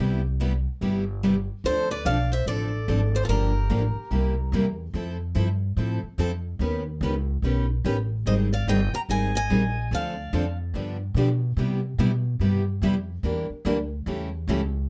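A dark, warm small-room sound frames this charming, lively slice of acoustic string swing, with a woody, thumpy pizzicato upright bass on gut strings sitting up front beneath two bright, picked steel-string guitars carrying the accompaniment. A boxy, swing-style lead guitar with fresh strings takes the melody in two short phrases starting at 1.7 and 8.3 seconds, shadowed by a quieter steel-string second line. The harmony moves through jazzy sevenths and ninths, including an augmented chord and a half-diminished turn near the close.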